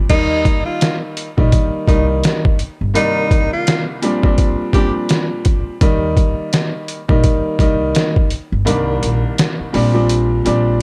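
A gritty, overdriven sampler-style drum kit with a thumpy kick and medium-tuned snare sits up front in this soulful, confident boom-bap hip-hop excerpt at 84 BPM in Eb major, carrying a swung 16th feel under boxy, short-sustain grand piano chords, a woody pizzicato upright bass and a breathy, close-miked tenor saxophone melody with vibrato and tape echo that plays from 0.1 to 4.9 seconds, before the kick drops out at 8.7 seconds in a dark, small-room mix.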